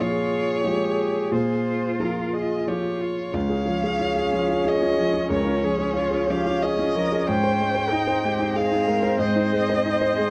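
A gently rubato 3/4 pulse at 92 BPM carries this tender, hopeful neoclassical excerpt for piano and strings, tuned to A4 = 443 Hz. The boxy grand piano sits up front with short sustain, laying down accompaniment from deep in the bass up through the middle register. Above it, a single con sordino violin, bowed with vibrato, sings the melody in a veiled, distant tone. A viola, also played by one muted player, fills in accompaniment with portamento and a smooth top, while a soft-attack cello adds a second line in a shadowy voice. At 3.3 seconds the harmony shifts from Bbm7 to Db and a thumb-plucked Celtic harp enters in the background, its ringing arpeggios touched by slapback echo, before the chords settle on Ab until the cut at 10.3 seconds. A moderate studio reverb and a dusky, warm production wrap the ensemble.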